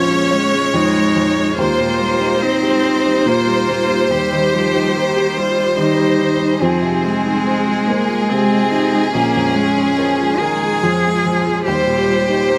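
Neoclassical piano and strings in a rubato 3/4, this short fragment cut from a longer piece feels melancholic and fragile. A clear chamber violin section carries the melody up front, its focused ensemble tone sung with vibrato yet set at a slight distance, while a single cello plays a close, rich second line beneath it. A felt-muted upright piano gives soft, mellow accompaniment, its intimate sound carrying audible action noise, and a lone viola adds smooth, even support from the background. From 0.2 seconds a very quiet granular cloud pad holds sustained chords, blurred and evolving with a bright, detuned haze and its own built-in reverb. The harmony moves from Bbm7 through Eb6, Cm/Eb and Fm7 before returning to Bbm7 and Eb6, captured with close, detailed microphones and light reverb.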